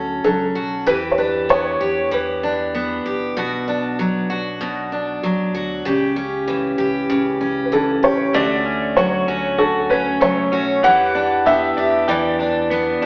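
Acoustic pop with a sunny, easy-going mood, this excerpt rests on a woody, up-front picked steel-string acoustic guitar with old strings, over a deep, full sine sub bass sitting in the background. A dark, mellow upright piano carries the melody; it sounds worn and slightly detuned, with audible action noise. It steps away at 3.0 seconds and returns at 7.7 seconds, and a clean, compressed electric guitar recorded direct adds scooped arpeggios from 8.3 seconds. The band plays live in one wet stone room, and the whole recording has an AM-radio character over a chord movement that starts on Dmaj7.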